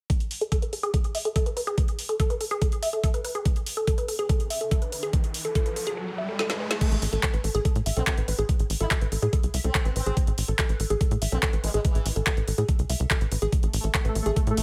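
An intense, hypnotic psychedelic trance excerpt opens on an overdriven, knocking electronic kick up front and a layered kit of crash, handclaps, bright hi-hat and woody snare, joined almost at once by a dark, wave-folded pluck riff with chorus, delay and sidechain pumping, while a filter sweep moves across a synth arpeggio and a riser and drum fill lead at 6.8 seconds into a section driven by a tight, punchy, detuned sawtooth sequencer bass, with a chorused formant-sweep wobble bass carrying dub echo from 8.0 seconds and a pulsing, tempo-synced gated chord texture arriving at 13.8 seconds, all in a dry-sounding room.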